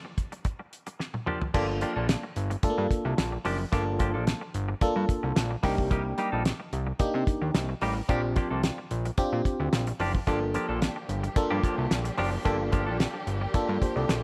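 Early-eighties boogie funk in G minor at 110 BPM with a funky, late-night mood, this excerpt opens on a clean, hollow-body electric guitar riff with subtle chorus and a damped, dry 70s drum kit whose fill at 1.0 seconds brings in a fat, saturated analog bass and a glassy, bell-like FM electric piano with chorus over Gm7, Cm7 and Bb6 chords, before a lush, distant string section adds sustained chords in the background from 10.3 seconds, all in a small room with light reverb.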